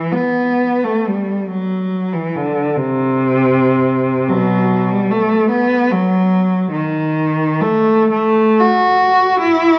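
Yearning and lonely, this classical fragment for a single unaccompanied bowed cello unfolds in a free, rubato 6/8, lifted from a longer piece and lasting about 9.8 seconds. The cello sits up front with a rich, smooth and even tone and vibrato, moving between B2 and F#4. A moderate concert hall reverb surrounds it, while a worn old cassette tape adds warbly pitch drift and dulls the top end.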